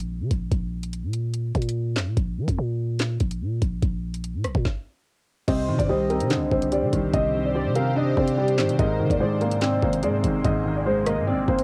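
Drill-style hip hop with a dark, ominous mood and a half-time feel, opening on a break of growling, buzzy 808-style bass and an overdriven drill kit with knocking kick, woody snare and bright hats, both up front, before a stop from 4.7 to 5.5 seconds. At 5.5 seconds the piece moves to add-nine harmony, C minor and then A-flat, as a boxy concert grand carries the melody through low-pass filtering, cassette tape coloring, tape echo and plate reverb, joined by a velvety synth lead with vibrato, a felt-muted upright piano with audible action noise, and an evolving, warbling pad with phaser. The whole has the character of a home cassette recording in a moderate studio reverb.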